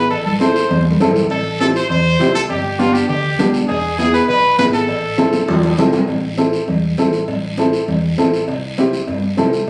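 A clear, punchy trumpet stands up front, playing a solo melody with light vibrato in a pop style until it stops at 5.7 seconds. This driving, passionate cumbia, cut from a longer piece, moves at 201 BPM in A minor, passing through Am, G and E before returning to Am and later reaching C. A woody upright piano, intimate and boxy with audible action noise and long sustain, carries the accompaniment up front to 9.6 seconds. A dark, round hollow-body electric bass, picked and amped, holds the low end, while high-tuned congas ring softly in the background, distant cowbell and timbales add a ringing metallic tone from a large room, and a raspy guiro sits quietest of all. The sound is that of a phone capturing the band in the room, with club reverb and compression.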